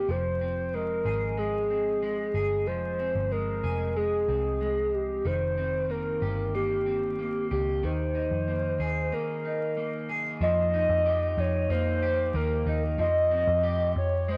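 Melancholic and ethereal, this dream pop piece in F minor moves at 93 BPM as a hollow, woody clarinet-like synth lead with chorus and vibrato carries the melody up front over slightly broken-up guitar arpeggios bathed in lush chorus and analog delay and a round, punchy foam-muted picked bass, captured in a dry, gritty recording with vinyl crackle and light reverb, with a break at 9.1 seconds before a new section arrives at 10.4 seconds.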